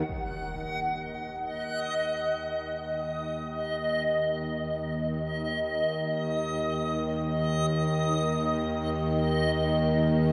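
Drenched in a huge, wet reverb with an 8.6-second tail, this short dark ambient drone excerpt unfolds in free time, tuned to A4 = 444 Hz, with a desolate mood. Up front, a tense, string-like bowed drone between Eb2 and Eb3 carries a detuned sawtooth tone with a noise layer, ring modulation and vibrato, fading in from 0.1 seconds until the cut at 10.3 seconds. Above it, a reversed, granular texture between Eb5 and Gb5 swells with a bright, dreamy character throughout.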